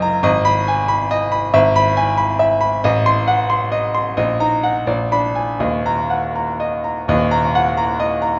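A clear, up-front grand piano plays alone through this stormy, passionate fragment of a classical virtuoso study in Eb minor, moving in a rubato 6/8 at about 78-94 BPM across a range from Eb1 to C6, its smooth, vintage tone and short sustain set in the wet reverb of a recital hall as the harmony passes from Abm through E/G# and Adim7 to a Bb7b9 that settles on Ebm at 5.6 seconds.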